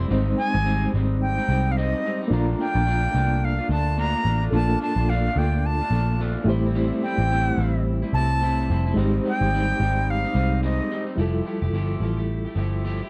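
Indie bedroom pop at 108 BPM in F major, dreamy and nostalgic, with a sixteenth-note swing and a dry, close 1970s-style studio sound. A bright, pure silver concert flute carries the melody up front with vibrato, a soft attack, subtle chorus and slapback echo until 11.0 seconds. Beneath it, a twangy, slightly broken-up electric guitar through a small old amp drifts with lush chorus, a clean electric piano shimmers with fast tremolo and cassette-tape colour, and a round, punchy foam-muted picked bass anchors the Abmaj7, Bbmaj7 and Am7 changes before the passage settles on Fmaj9 at 11.2 seconds.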